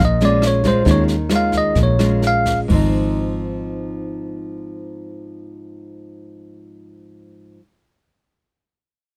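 Breezy and relaxed, this bossa nova excerpt in Ab major moves at 122-142 BPM in straight 4/4 and slows through its opening, as a bright, bell-like tine electric piano carries the melody up front until 2.6 seconds over fingerpicked nylon-string guitar with audible finger squeak, a round, dark, foam-muted fingered electric bass, and a jazz brush kit with a boomy kick, rim click and hi-hat that drops out at 2.8 seconds; the harmony moves from Eb9sus4 into Ab6 at 2.7 seconds, and guitar and bass carry on until 7.6 seconds, all captured with close, detailed microphones and light reverb.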